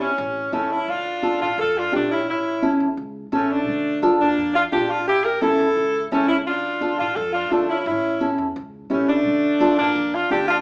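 Driving and danceable, this short cumbia excerpt moves at 172 BPM in a straight 4/4, set in D harmonic minor and cut from a longer piece. A saxophone section carries the melody up front with a warm, jazz-style ensemble tone and light vibrato, while a fingerpicked nylon-string guitar supplies dark, full-bodied classical accompaniment. Beneath them, a pizzicato upright bass with steel strings adds a woody low end, sitting far back in the balance. The harmony swings back and forth between A or A7 and Dm throughout. All three parts play together from start to finish in one room, bathed in a wet large-studio reverb, and the whole has a small-speaker character.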